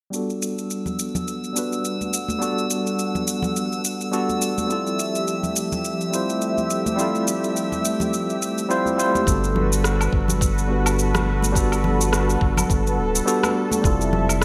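A clean, up-front tine electric piano carries this blissful, smooth sunset chillout excerpt, its chords passing through a low-pass filter sweep and delay over the first 9.3 seconds while a lush, detuned sawtooth pad with chorus and phaser sustains beneath it, sweeping alongside. Tape-warm electronic shaker, rim click and woodblock set a lightly swung groove in studio reverb, with soft-handed, close and dry congas sitting in the background from 0.9 seconds. A glassy texture of drifting sine overtones hangs high above from 0.7 to 9.3 seconds, calm and long-releasing in its own reverb. At 9.3 seconds a round, dark analog bass with a fast filter pluck arrives up front together with a deep, layered electronic kick, grounding the harmony as it moves between Gmaj9 and Fmaj9. The whole piece has a bright 1980s-style digital sheen, bathed in a moderate plate reverb.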